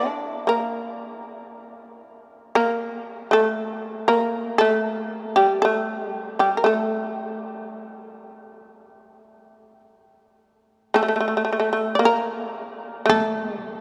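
Two shamisen open this short excerpt of Japanese traditional chamber music, one carrying the melody between G4 and D5 while the other plays a second line an octave lower, from G3 to D4. The mood is calm and austere, the pulse slow and rubato at about 57 BPM in 4/4, with the instruments tuned to A4 = 438 Hz. Both plectrum-plucked, fretless shamisen sit up front with a mellow, buzzing, percussive bite that feels powerful despite the unhurried pace. At 10.9 s a taiko ensemble struck with hard sticks joins very quietly, its compressed, saturated hits lasting until 13.3 s as the music moves into a new section. A cathedral reverb with a 6.5-second decay bathes the sound in a long, resonant tail until the fragment breaks off at 13.8 s.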